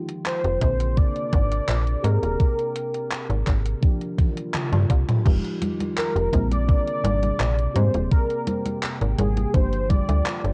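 Vaporwave at 84 BPM with a nostalgic, hazy mood, cut from a longer piece, where a soft, round FM electric piano with phaser and chorus and a warbling, detuned pad in the background carry chords through Fm9, Bb9, Abmaj9 and Gm7, a velvety lead with vibrato and tape echo sings the melody from 0.3 seconds, a snappy, metallic slap-like FM bass and a thumpy, up-front kick anchor the groove, and a gated 80s drum machine of congas, handclaps, hi-hat, toms and crash with gritty 12-bit texture plays a fill from 4.2 to 5.3 seconds, all heard as a dry home recording on cassette.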